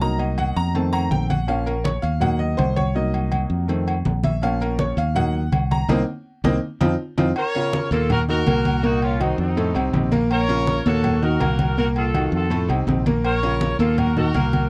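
A bright, worn grand piano opens this driving, passionate salsa at 163 BPM in Bb harmonic minor, taking a solo turn through the opening 7.4 seconds while an up-front fingered electric bass, low-tuned, thick-skinned congas in the background and ringing agogo bells and timbales drive the groove. A band accent arrives at 5.9 seconds and a drum fill at 6.3 seconds, and a distant, roomy horn section with light vibrato carries the melody from 7.4 seconds over a recurring Cm7b5, F7, Bbm, Ebm cycle, captured in a dry, close, 1970s-style studio sound.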